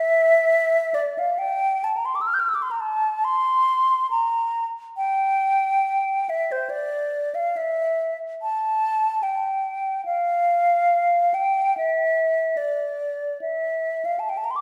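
Rubato and uneven around a loose 71 BPM in 4/4, this mournful, yearning classical fragment, cut from a longer piece, gives a lone silver concert flute, mellow, hollow and pure with vibrato and tongued notes, ranging from C5 to G6 in G dorian (tuned to A4 = 437 Hz) across 14.6 seconds, its sound up front yet carried by a wet recital hall reverb heard from further back in the room.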